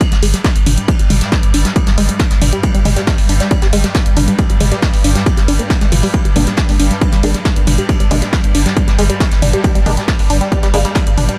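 An overdriven, layered electronic kick drum sits up front in this dark, industrial peak-time techno excerpt at 137 BPM, driving beneath a tight, detuned sawtooth synth riff with sampler grit, chorus and delay under a filter sweep, a swarming, granular drone, a dry analog drum machine on hi-hat and toms, a brushed vintage kit with dark ride cymbal and snare, a thick, saturated sine sub bass, and a muted, phased dub chord stab that enters at 6.4 seconds, with sidechain pumping on many parts.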